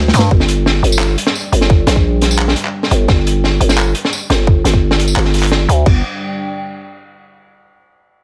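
A half-time groove at 173 BPM in 4/4 drives this tense, heavy drum and bass fragment in G minor, cut from a longer piece. A short drum fill opens it before a tight, layered electronic kick lands up front at 0.3 seconds on a G5 chord. The crunchy breakbeat kit sounds saturated and gritty, with a medium-tuned snare, handclaps, tambourine, hi-hat and dark, rolled-off crash cymbals sitting mid-forward. A growling, buzzy 808-style bass with a fast attack and decaying notes sits prominently in the low register, while a deep, moody analog pad holds sustained, detuned chords in the background, colored by chorus, ring modulation and sidechain pumping. The drums drop out at 5.9 seconds and the bass follows at 6.0 seconds, leaving the dark pad alone until 7.2 seconds in a dry, close-sounding mix.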